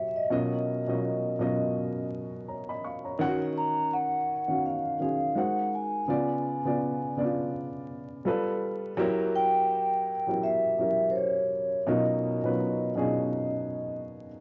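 Smooth and late-night in mood, this short excerpt cut from a longer R&B piece moves at an easy pace with a gentle sixteenth-note swing. A vibraphone played with soft mallets carries the melody in a ringing, metallic voice, its slow motor vibrato lending a mellow glow. Beneath it, a dark baby grand piano supplies the accompaniment up front, intimate and natural, with short sustain and audible action noise from the keys. The harmony drifts through lush extended chords, opening on Bmaj9#11, passing through Ebm9, Ab9 and altered dominants like Db7b9 and Gb7b9, before returning to Bmaj9#11 near 11.9 seconds. Both instruments share a cassette-tape character and plate reverb, set in a modest small-room ambience with a homemade feel and a faint bed of vinyl crackle.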